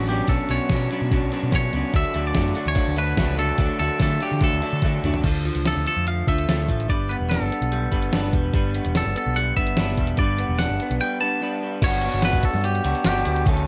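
A dry cut from a longer indie rock piece, it moves at a carefree yet wistful 146 BPM in straight 4/4, driven by an up-front, sampler-style 80s drum machine with a thumpy kick and a gated-reverb snare pushed into overdrive. A bright, compressed, twangy lead guitar carries the melody through digital delay, while a crunchy guitar riff shimmers with chorus and delay, a lo-fi, slightly broken-up guitar through a small old amp adds its own picked riff, and a round, punchy picked bass anchors the low end. After a drum fill at 4.8 s the harmony shifts, and at 11.8 s the crunchy guitar drops out as a clean guitar solo enters on a Gmaj7 chord.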